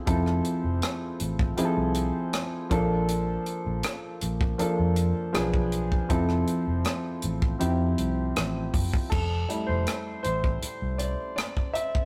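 A concert grand piano opens this short cut from a longer piece of lush 1970s-style soul, its tone intimate and natural, with deep bass and the sound of its action audible up front. A foam-muted fingered electric bass, dark, round and punchy through an amp, and a tight funk drum kit with a dry, tight kick, crash cymbal, hi-hat and rim clicks join almost at once. At 80 BPM in straight 4/4, the romantic, warm mood rests on an F major progression that moves from Fmaj7 to Bbmaj7, passes through Bdim7 and settles back on Fmaj7. The piano takes a solo from 9.1 s, and the bass drops out at 11.1 s while the drums carry on to the end. A moderate stone-room reverb and a rough rehearsal-room quality give the performance a close, unpolished feel.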